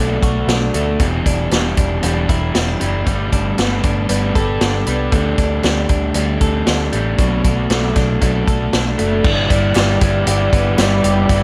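Wistful and bittersweet, this jangly indie pop fragment pairs an up-front overdriven garage guitar with bright, twangy clean electric guitar arpeggios through analog delay, a dark, round, foam-muted fingered bass and a vintage drum kit with a punchy kick and dark cymbals, before a detuned, warbling analog pad with chorus enters in the background at 9.2 s and a hollow, very quiet group handclap joins at 9.8 s, all under light reverb.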